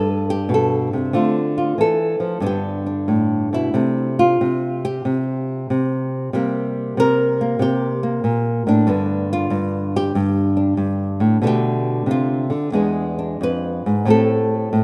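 Swung eighths at 93 BPM with a relaxed rubato lilt carry this solo jazz fragment from a longer piece in G mixolydian, where a lone fingerpicked nylon-string guitar, warm, small and up front in a rough home demo mix with moderate plate reverb, drifts from G6 and Gadd9 through Csus2 and G7 toward Bm7b5, E7b9 and Am7 across 14.8 seconds.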